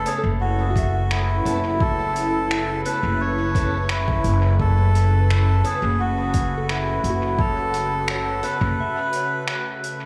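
A straight 4/4 pulse at 86 BPM carries this meditative, spacious ambient dub piece over an Aadd9/F# chord: a reedy, breathy melodica sings the up-front melody through dub echo until 9.4 s, a woody, thumpy pizzicato upright bass holds a low F#1, and a deep electronic kick joins at 0.8 s beside a distant soft-mallet kit of finger snaps and hi-hat sent into dub echo, while a detuned sawtooth pad sustains chorused chords, a pure FM synth bell arpeggiates gently in the background with chorus and tape echo, and a very quiet tonewheel organ adds key-clicking stabs through a fast rotary speaker, set inside a moderate echo-chamber reverb before a brief break from 8.8 s.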